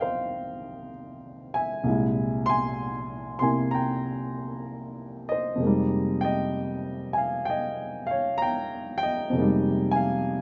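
A warm, natural baby grand piano sits up front in this smoky, cool solo jazz excerpt, swinging slowly in 4/4 through Cm7, C7b13 and Fm11 across a range from C2 to C6, with light reverb and a dark production.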